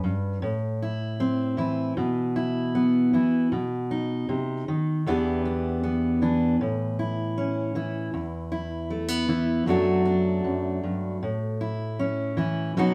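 A fingerpicked steel-string acoustic guitar plays alone and up front through this reflective, melancholic folk excerpt, its full-bodied dreadnought tone sitting in a wet studio reverb as it moves from Am through Bsus4, B, Em7, A and E5 before settling on D/F# and A by 12.9 seconds.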